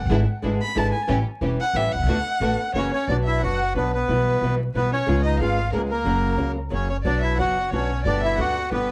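Tango, sultry and tense, in a rubato 3/4, opening with an expressive solo bowed violin, its vibrato and portamento carried through analog delay, over woody, thumpy pizzicato upright bass on gut strings and fingerpicked flamenco guitar with audible finger squeak. A reedy, bright bandoneon takes the melody up front at 2.8 s, while a lush studio string section adds intense stabs in the background during the opening and again from 7.1 s. Moderate studio reverb and vinyl crackle frame this short excerpt.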